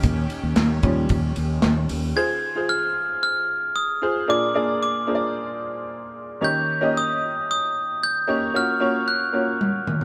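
A straight 4/4 pulse at 113 BPM drives this earnest piano-driven pop passage in F minor, cut from a longer piece. A woody, slightly detuned upright piano plays throughout. It opens alongside a warm fingered electric bass, a dark acoustic drum kit with a tight kick, and a resonant sawtooth pad with chorus, all of which drop away by about 2.1 seconds. A bright, sparkling glockenspiel with hard plastic mallets carries the melody from 2.2 seconds, and the drums return with a fill at 9.6 seconds, the whole band sharing a moderate stone-room reverb as if playing live together.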